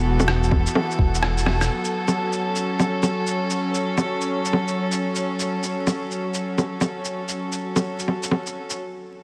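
Future garage in F# minor at 127 BPM, with a swung 16th-note feel and a melancholic, wistful mood, heard as a short cut from a longer piece. A rich, earthy chamber string section holds sustained chords up front for nearly the whole passage, pumping against the sidechain and passing under a low-pass filter sweep from 1.7 s onward as the harmony moves from Esus2 to F#m. At the start, a dark, detuned saw bass rumbles deep and saturated beneath the strings, joined by a very quiet, grainy, flickering granular texture, and both stop at 1.7 s. Compressed, pitched-down electronic bongos, shaker and rim click sit muffled and tape-toned in the foreground, while a soft electronic kick appears only briefly before dropping out, with a band accent and a drum fill marking the turn into the second section. A huge ambient reverb and vinyl crackle wrap the whole passage before a stop at 8.8 s.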